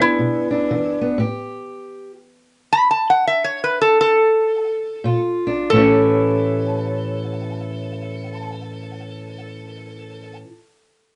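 Swung eighths in four ease into a slowdown between 1.2 and 5.7 seconds in this gritty, swaggering snippet of acoustic country blues cut from a longer piece, where a nasal, metallic resonator slide guitar played with fingerpicks carries the melody up front over a boxy, dark parlour steel-string guitar fingerpicking the accompaniment, both heard in a moderate studio room with a warm, soft-topped production.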